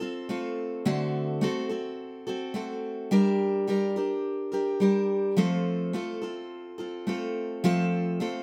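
A picked steel-string acoustic guitar on a dreadnought body carries this short pop fragment alone, sitting up front with a woody, full-bodied tone and the warm character of old strings. The mood is heartfelt and carefree, moving at 106 BPM in 4/4 with a light swing on the sixteenths. In F major and tuned to A4 = 442 Hz, the guitar ranges from D3 to Bb4 and moves through F, D7 and Gm before settling back on F at 5.4 seconds. A moderate studio reverb gives the sound a live, in-the-room feel. The piece is cut from a longer work and ends at 8.4 seconds.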